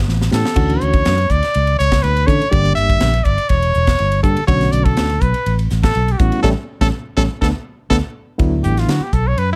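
Electric jazz fusion at 123 BPM in D major, bright and funky, with a forceful, up-front trumpet carrying the melody over a round, dark fingered electric bass and a crisp drum kit whose punchy kick and medium-tuned snare open with a fill at 0.1 seconds. A reedy electric piano with fast tremolo comps from 0.3 seconds, moving through chords like Dmaj7, Gm and Bm7, before a band accent from 6.4 seconds and a second drum fill lead into a brief trumpet solo at 8.4 seconds over D69. The short excerpt sits in a small room with a dark, warm production, the trumpet's scooped notes and light vibrato standing out.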